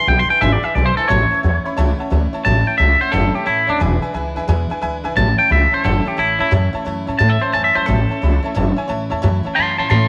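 Rockabilly with a rollicking, retro swing, where a bright, scooped twangy electric guitar carries the melody up front through spring reverb and tape echo, a full-bodied picked steel-string acoustic guitar with audible finger squeak and a slightly detuned upright piano fill out the accompaniment, the piano adding a short fill from 1.4 to 2.4 seconds, and a dark, thumpy gut-string upright bass anchors the bottom, all within a small room's ambience.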